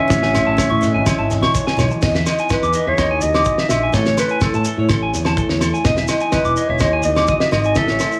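Highlife guitar band music at 125 BPM in 4/4 with a straight feel in E major, this short excerpt from a longer piece has a carefree, warm mood, moving between Amaj7 and Emaj7 chords. A growling clarinet carries the melody throughout, raspy and gritty with vibrato and scooped notes in a jazz style, while a mellow alto saxophone with subtone and slapback echo adds a brief second line in the background, stopping at 1.5 seconds. A clean electric guitar plays picked arpeggios high above, also touched with slapback echo, and a bright, boxy swing-style acoustic guitar picks its accompaniment further back. A dark, round fingered electric bass anchors the low end beside a damped 70s drum kit that sits up front with a fat snare, tight kick and crash cymbal. Grainy shekere and ringing agogo bells fill out the percussion, with low-tuned, thin-skinned congas appearing only from 0.7 to 2.0 seconds, and a moderate spring reverb gives the whole band a shared sense of space.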